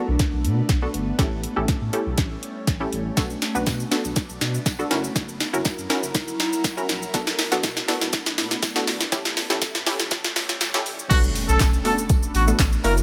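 Dance-pop at 121 BPM in B minor, driving and confident, this short cut from a longer piece spends its first 11.1 seconds as a build-up under a filter sweep and drum fill before dropping in at the end. A lush, detuned sawtooth pluck with a wave-folded edge and fast, decaying notes carries the accompaniment, breathing with sidechain pumping alongside a deep, thick saturated sub bass and an ethereal, airy pad whose slow-attack chords shimmer through ensemble chorus, phaser and built-in reverb. An electronic R&B drum kit sits up front, overdriven and re-recorded in a small room, pairing a soft kick with a sharp snare, hi-hat, shaker, handclaps and crash, while a jingly, very quiet tambourine joins at 3.2 seconds. The harmony moves through Bm7, A7 and F#7 before settling back on Bm7 at the drop, where a clear, tight horn section enters at 11.1 seconds with light vibrato, pumping and delay, joined by a faint electronic impact. 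Light reverb glues the mix together.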